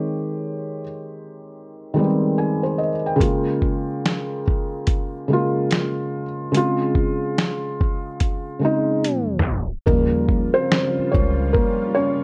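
Reflective and nostalgic, this lo-fi hip hop excerpt at 72 BPM with a swung 16th feel opens on a dark, felt-muted upright piano with audible action noise and cassette-tape coloring, joined at 3.2 seconds by a compressed, pitched-down sampler-style drum kit with a thumpy kick, whose fill overlaps a tape stop leading up to 9.9 seconds, when the hi-hats drop out and the piano takes a solo over woody pizzicato upright bass and a mellow, chorused string-machine cello pad with a sawtooth sub-octave, in a moderate studio reverb.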